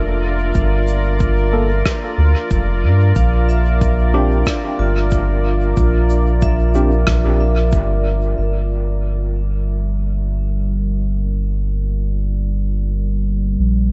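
The recording sits in a small room with light reverb, its top end capped below 7.9 kHz. This is a deep, meditative slice of ambient dub in G dorian at 92 BPM in 4/4, with a lazy swing on the sixteenths and chords moving from Gm7 to Bb6 and back to Gm7. An up-front, round sub bass with tube saturation anchors it beneath a dark, full-bodied pad of detuned sawtooth unison and a sine sub octave, its slow attack and long release bathed in chorus and reverb. A bright, metallic vibraphone rings out arpeggios through tape echo until 8.4 seconds, while a worn, slightly out-of-tune tine electric piano adds mellow, lightly overdriven stabs with dub echo in the background from 1.5 seconds. Brushed shaker and rim click, filtered and sent into dub echo, sit over a layered electronic kick drum in the background, and both drop away at 7.9 seconds. The vibraphone's last arpeggios ring on briefly, and then the pad and bass carry the close alone.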